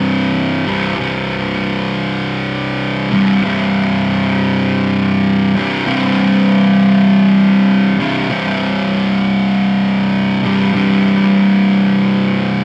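The recording has the rough feel of a rehearsal room, with warm saturation and a light reverb hanging around the sound. It is a heavy, sludgy metal passage at 98 BPM in a straight 4/4, cut from a longer piece and running 12.6 seconds. A double-tracked fuzz guitar sits up front and carries the whole clip, picked and thickly distorted. Its playing stays low, between C2 and C3, built on a C5 power chord from the opening moment. The doubled fuzz tone gives the part a dense, grainy weight that suits the heavy, sludgy mood.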